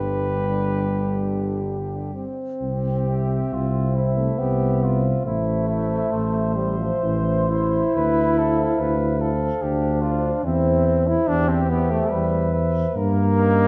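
Tender and serene, this classical, hymn-like excerpt for brass band moves in a rubato 3/4 at 60-73 BPM in C major, with a mellow cornet carrying the melody over a flugelhorn second line that sounds distant and roomy with light vibrato, a clear trombone with vibrato and a dark euphonium in the background sharing the accompaniment, and a smooth-topped, up-front tuba anchoring the bass, all five playing throughout the 13.7 seconds in a wet recital hall reverb with a warm production.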